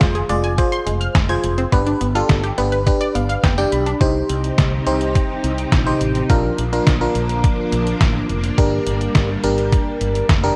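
A straight 4/4 pulse at 105 BPM from a thumpy, overdriven 8-bit drum machine drives this upbeat, nostalgic synth-pop excerpt, where a glassy, bell-like FM electric piano with chorus and phaser sits up front over a round, dark fretless bass, a punchy detuned unison pluck plays arpeggios until 4.0 seconds, the piano adds a fill from 2.9 seconds, a lush, sustained string machine enters at 4.0 seconds, and the whole mix carries a light digital reverb and the warbly pitch drift of worn cassette tape.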